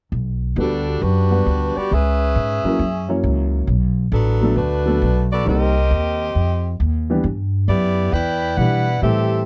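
Big band swing jazz in G major at 135 BPM, this passage has a joyful, swinging mood and a swing feel on the eighth notes. An upright bass enters at 0.1 seconds, plucked on gut strings with a woody, thumpy tone that sits up front. From 0.6 seconds a tight saxophone section carries the melody in a present, jazz style with vibrato, while a baby grand piano with a warm, natural sound plays the accompaniment. The harmony moves from Gmaj7 through C#m7, F#7 and Bm7 to Cm7, Fsus2, G6 and Em7. The sound is dry and close, like a 1970s studio session with little reverb, and the cut from a longer piece ends at 9.5 seconds.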